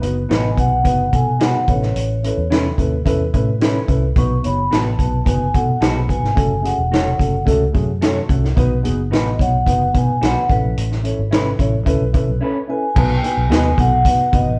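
A straight 4/4 groove at 109 BPM drives this danceable, uplifting 1960s-style soul excerpt in B mixolydian, where a punchy, up-front vintage drum kit with 12-bit sampler grit and a round, foam-muted fingered electric bass anchor a dark, woody upright piano that takes a fill at 7.7 seconds, while a ringing vibraphone with slow motor vibrato carries the melody over twangy, slightly broken-up guitar stabs with a warbly pitch drift, all captured live in one stone room on cassette tape before a break at 12.4 seconds.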